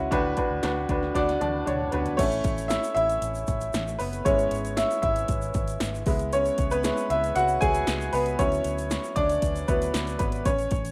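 Piano-driven pop at 116 BPM with an anthemic, uplifting mood, this rough home demo excerpt sets a brilliant, woody upright piano up front, its action noise audible as it fills at 1.2 seconds and takes a solo from 2.2 seconds over chords moving D6, A, E/G#, C#m7, while a round, foam-muted fingered electric bass, overdriven deep house drums with a deep kick, punchy snare and metallic hats, and a grainy egg shaker entering at 2.2 seconds in the background sit in light reverb.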